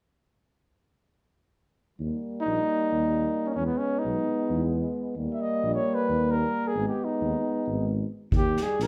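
A live band sound fills a large studio, with generous reverb giving the brass a roomy glow in this short excerpt from a longer Balkan brass piece. The mood is restless and fiery, and the music moves in free time, unbound by a steady pulse. From 2.0 seconds a mellow, up-front tuba anchors the bass while a warm euphonium and a clear, close-miked trombone hold the accompaniment, each shaded with light vibrato in a classical style. The dark trumpet takes the melody from 2.4 seconds, its soft attack and smooth top placing it close and prominent above the low brass. At 8.3 seconds an acoustic drum kit enters, played with bundle sticks, its punchy kick and medium-tuned snare sounding airy and polished as the harmony settles back onto Eb.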